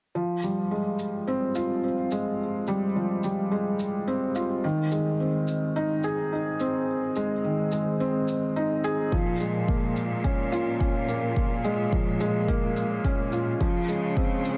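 Intimate and melancholic, this piano-and-strings electronica fragment in F minor moves at 107 BPM as a soft, felt-muted upright piano with audible action noise and digital delay plays an up-front riff over a tape-warm shaker, until a bright, vibrato-laden cello section with sidechain pumping and a deep, layered electronic kick join at 9.1 seconds, all within light small-room reverb.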